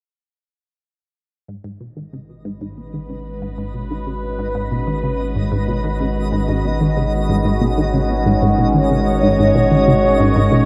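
Soaked in a huge, dark reverb with a long tail, this short ambient piece, cut from a longer work, feels expansive and mysterious, moving at 93 BPM in a straight 4/4 and resting on a G# minor chord throughout. At 1.5 seconds a juicy, squelchy sawtooth pluck begins a low, resonant riff, its detuned tone colored by chorus, phaser, a moving notch and tape echo, while a deep, round sine sub bass fades in beneath it on a low G#. An evolving wavetable pad arrives at 2.8 seconds, mellow and up front, its detuned, vintage warble morphing through sustained chords under phaser and shimmer reverb. From 4.3 seconds a faint, twinkling granular texture adds a bright, sparkling FM shimmer an octave up, held high above the other parts. The result is a slow, enveloping, warm-toned haze in which the layers gradually fade in together.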